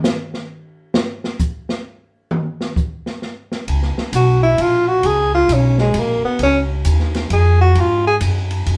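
Heard from further back in a reverberant studio room, this short cut from a longer piece is playful, swinging small-group jazz in the swing-and-bop vein, moving in 3/4 at 132 BPM. An acoustic drum kit opens alone at 0.0 seconds with a drum solo; its dark cymbals, medium-tuned snare, boomy kick and rolled-off top give the kit a smooth, small-room character. Pizzicato upright bass arrives at 3.7 seconds, up front and woody, its steel strings sounding over a Db13 harmony. A breathy tenor saxophone takes the solo melody from 4.2 seconds, mellow and smooth on top, with light vibrato and scooped notes in a jazz style. The harmony settles on Fm near the end, while the bass and drums carry through to the close.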